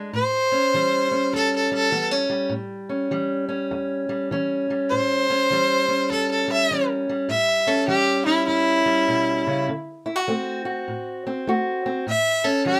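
A bright, focused fiddle carries the melody from 0.1 seconds, bowed by a single player with light vibrato and sitting close and up front. This is gritty, soulful acoustic country blues at 101 BPM in 4/4, with a swung eighth-note feel in A mixolydian. Beneath the fiddle, a dark, boxy parlour steel-string guitar is fingerpicked as accompaniment, and it is also placed up front. The harmony rests on A7, moves to D7 at 9.7 seconds and returns to A7 before the section ends at 12.8 seconds. Light reverb gives the duo a touch of room in this short passage cut from a longer piece.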